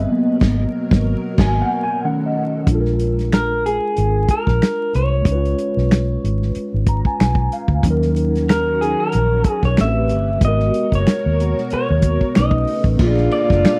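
An R&B and neo-soul groove at 93 BPM in 4/4 with a light sixteenth-note swing, this sultry, late-night passage is cut from a longer piece and carries a dry, close 1970s-style studio sound with small room ambience and vinyl crackle. A mellow, clean tine electric piano with ensemble chorus takes a solo over Abm9 and Ebm7b5 while the band hits an accent, before a silent gap from 1.4 to 2.7 seconds. A silky string machine treated with phaser and chorus sounds from the start and returns at 8.3 seconds. The foam-muted fingered bass sits round and dark up front, while the muffled, lo-fi soul kit mixes a tight kick, medium-tuned snare, hi-hat, finger snaps, and dark ride and crash cymbals. From 3.3 seconds a slightly broken-up electric guitar through a small old amp carries the picked, compressed melody with slapback echo, and the electric piano adds a fill around 6.5 seconds. The harmony drifts through Bb7, Db7, Ebm7, Am9 and B9, and a vibrato-laden saxophone section drops in jazz-style stabs in the background at 13.0 seconds as the passage lands on Bb7.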